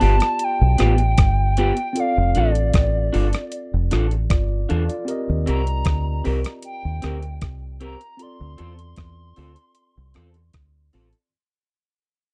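A tender, romantic lovers rock groove fades out from the very start, built on a crisp, thumpy 8-bit drum machine playing hi-hat, kick and rim click up front, alongside a deep, round, foam-muted dub bass that is the loudest part. A twangy, slightly broken-up guitar adds bright stabs, while a worn, slightly out-of-tune tine electric piano with light overdrive fills in the accompaniment. Over them a reedy, woody FM lead carries the melody with a soft attack, vibrato, chorus and tape echo, moving over G7, F6, Eb6 and Dm7 in a dry, close 1970s-style studio sound.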